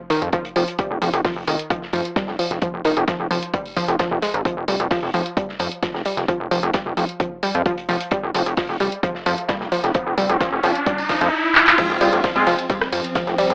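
A dry, gritty hardware recording with transformer saturation and an AM-radio tint, touched by moderate plate reverb, carries this driving, dark peak-time techno excerpt in straight 4/4. An up-front layered kick, a punchy analog drum machine with pumping hats and cymbals alongside claps and rim clicks, and a smooth acoustic kit of filtered hats and snare in the background underpin an aggressive, tube-driven sawtooth bass and a lush, warbling detuned pluck riff that pumps through analog delay. A riser builds from 9.4 s and a drum fill leads into the drop at 11.8 s, where a thick, ring-modulated rave stab hits with chorus and delay, and a swarming granular drone creeps in at the close.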